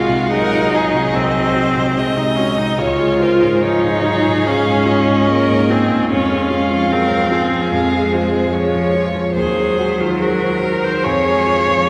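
A rich, focused viola sits up front, its bowed accompaniment carrying vibrato through this tender, serene fragment of a slow romantic movement for piano quintet, cut from a longer piece. Above it, a clear, focused solo violin sings the melody with vibrato, while a second violin drifts in the background, distant and expressive, colouring its line with portamento. A smooth, even cello adds its own low second line, and a warm grand piano, intimate and up front, supports the strings with short-sustained notes and audible action noise. All five players sound together throughout the 11.9 seconds, moving freely in rubato over a gently shifting progression that returns to Db/F at 11.0 seconds. A wet cathedral reverb surrounds the ensemble, giving the church or concert-hall sound a long, lingering glow.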